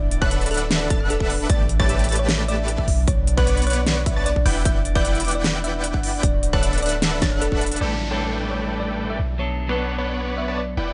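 Half-time future bass in 4/4 drives a punchy, tape-warm electronic kick and a big-room kit with a huge snare and crisp, filtered hats through a playful, bright drop that runs to 7.8 s, closing on a drum fill at 7.6 s. A boomy 808-style bass and a thick, detuned supersaw riff pump alongside a round, tine-like thumb-piano pluck melody, while a ringing fingerpicked harp and a lush high unison pluck add background arpeggios with tape echo. After the drop, a clean picked electric guitar and an electronic downlifter enter at 7.8 s as the chords keep cycling through suspended and seventh shapes in this excerpt from a longer piece.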